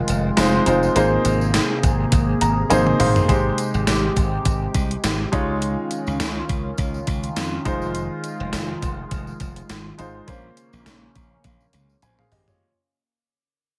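Nostalgic and glossy, this 1980s-style pop clip sets an up-front baby grand piano, which plays a fill from 2.1 seconds, over a swirling, nasal analog pad with phaser and chorus, a bright, glassy slap bass, a thumpy, overdriven digital drum machine with a gated-reverb snare and fills beginning at 2.7 seconds, and a jingly, dry tambourine in the background, all under a light swing as the music moves through Fm7, Abmaj7 and Dbadd9 and fades out from 3.3 seconds.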